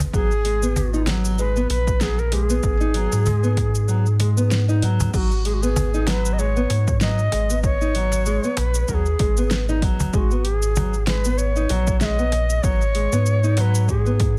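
Earthy organic downtempo in G# minor at 96 BPM with a light 16th-note swing, this fragment opens on a G#m7 chord as a round, up-front sine sub bass pumps under a punchy overdriven electronic kick and a deep house kit with a fat overdriven snare, hi-hat, shaker and crash, while a snappy, dry cajon sits in the background, thumb-plucked nylon-string guitar arpeggios with finger squeak and delay ripple beneath a bright, airy, reedy cedar flute melody with vibrato and delay, all in a small room, the kick dropping out from 3.9 to 5.1 seconds before the second section begins.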